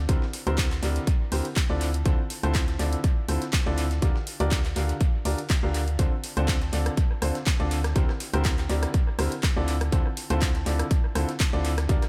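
A hollow, organ-like FM bass pumps against the sidechain on a low D from the first instant. It opens this soulful, energetic 122 BPM piano house cut with a lightly swung 16th feel, joined at 0.1 seconds by a clear, intimate baby grand riff with audible action noise and tape echo. An up-front, punchy layered electronic kick drives beneath them, an analog drum machine adds echoing handclaps, hi-hat and rim click, and a very quiet, gritty breakbeat kit supplies sampler-style hi-hat and snare. All of this runs over chords shifting from C7/D through Fmaj7/D and Bb6/D to Dm7 in a dry but echo-heavy mix.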